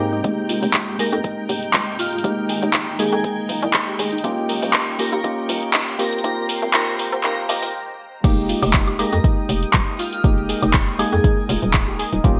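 Late-night and deep, this deep house cut in F minor moves at 120 BPM with a light sixteenth-note swing, shifting through Fm11, Eb7 and Abmaj9 before returning to Fm11. A punchy, up-front analog drum machine with handclaps, hi-hat, shaker, woodblock and crash cymbal, its gated reverb giving a tight snap, sits over a layered, tape-warm electronic kick. A hollow, bouncy FM bass with a fast knocking attack pumps against the kick. Dark, chorused organ stabs carry a gritty 12-bit sampler edge and digital delay, and a filter sweep on the synth stab drives the build-up toward a brief stop and the drop at 8.2 seconds. Behind them sit a smooth, detuned sawtooth pad, a blurred, evolving granular cloud pad and a shimmering vintage string-machine violin line that stops at 7.7 seconds, all pumping in the background, while a very quiet, round analog pluck arpeggiates and an airy, dreamy lead with phaser, chorus and vibrato floats in from 1.0 seconds. 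The bright 1980s-style digital production adds a moderate plate reverb and a warm, late-night glow.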